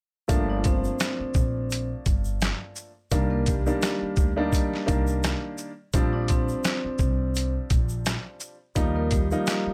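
A gritty, pitched-down boom-bap drum kit sits up front with a thumpy kick, medium-tuned snare, rim clicks, hi-hat and shaker, driving this dark hip-hop excerpt at 85 BPM in G minor with a swung 16th-note feel. A mellow, woody upright piano and a pizzicato gut-string upright bass carry the Gm7, Cm7, Bb6 and Ebadd9 changes. A ringing, metallic vibraphone played with medium hard mallets and the motor off carries the melody through high- and low-pass filtering and a digital delay, while a grainy, saturated tube shaker stays in the background and light reverb rounds out the sound.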